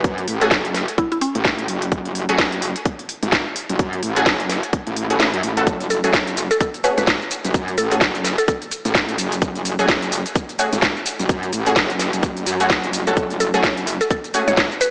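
Swaggering and bouncy, this excerpt of bass house moves at 128 BPM in 4/4 with a 58% swing on the sixteenths, sitting in F# minor over an F#madd9 chord. A metallic, aggressive FM wobble bass, distorted and compressed with chorus and sidechain pumping, sits up front from F#1 to F#2. It runs alongside a tight, layered electronic kick and a garage kit of cracking snare, crisp hats and shaker, both tape-toned and re-recorded in a large room, with the kit placed up front. The kick drops out briefly from 5.2 to 5.7 seconds. In the background, a bold, detuned sawtooth stab resembling an orchestra hit punches from A3 to A4 with a filter sweep, phaser, built-in reverb, digital delay and sidechain pumping, while a woody, round, mallet-like pluck with chorus and digital delay plays short melodic phrases between C#4 and C#5, appearing at 0.0, 5.9 and 13.4 seconds. Light reverb and a small-speaker character give the mix a compact, boxy sound.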